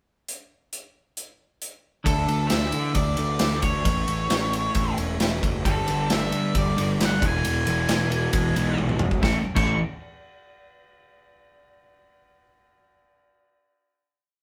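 Restless and anthemic, this short quiet-loud alternative rock piece in A major drives forward at 134 BPM in a straight 4/4. A big, acoustic rock kit opens alone with a pickup bar, its punchy kick and medium-tuned snare sitting up front alongside crash, ride, hi-hat and toms in a big rock groove. At 2.0 seconds a bright, twangy twelve-string electric guitar begins picking compressed arpeggios in the background. The pre-chorus then arrives at 2.1 seconds as a fuzzed, overdriven bass pushes driving eighth notes and a dark octave-fuzz lead guitar states a motif-based melody of call phrases high above. A thick, distorted fuzz guitar joins at 5.6 seconds with ringing chords as the harmony moves from Dsus2 through A and Gadd9 to Eadd9. A drum fill leads into a final A chord at 9.2 seconds, with the whole band heard live in one room under moderate studio reverb.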